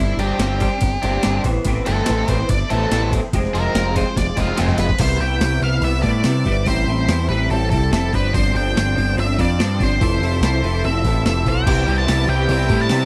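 An octave-fuzz lead guitar, dark and distorted with slapback echo, takes a solo over the first 5.0 seconds of this carefree, upbeat indie rock excerpt in a straight 4/4. Beneath it, a growling, overdriven picked bass sits up front. A lo-fi, slightly broken-up guitar through a small old amp plays a chorused riff, and a bright, raw garage guitar adds its own overdriven riff from 0.2 seconds, drops out at 4.9 seconds and returns near the end, while a very quiet, mellow string machine with cellos holds sustained chords. A gritty, compressed breakbeat sampler-style drum kit with a thumpy kick plays a fill into the second section, and the whole recording has a dry, close 1970s-style studio sound with little reverb.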